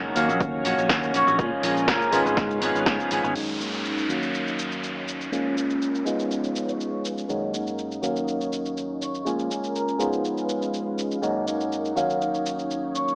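Filtered disco house at 122 BPM in F# major, funky and sunny, with the whole mix cast in a narrow AM-radio tone and a moderate plate reverb, taken from a longer piece. A bell-like tine electric piano carries the accompaniment up front, coloured by phaser, 12-bit sampler grit and a low-pass filter. Behind it, a lush sawtooth string machine holds slow-attack chords with phaser and ensemble chorus, while a clean, picked electric guitar plays a riff roughened by the same sampler grit. A growly fingered bass and a layered electronic kick drop out after about 3 seconds, leaving the punchy analog drum machine's snare, hi-hat, cabasa and crash, which pump against the sidechain along with most of the other parts. A veiled, cup-muted trumpet section enters at 1.1 seconds with a distant melody trailed by dub echo. At 3.4 seconds a downlifter and a filter sweep mark the turn into a new section, as the chords cycle through D#m7, A#m7, C#7 and F#6.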